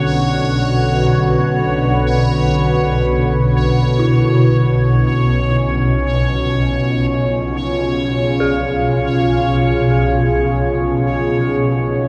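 Dark ambient drone in free time, unsettling and ominous, this 12.1-second fragment of a longer piece moves from Bm to C# beneath a wet cathedral reverb and the soft grain of cassette tape. Up front, a swarming, wave-folded drone with granular, detuned unison tones sits low from B1 to B2 beside a deep, moody analog pad of mellow sawtooth chords with a sub octave and chorus. A bubbling, resonant texture steps randomly through its filter on C#5, while a very quiet, eerie FM bell traces inharmonic arpeggios through chorus and phaser.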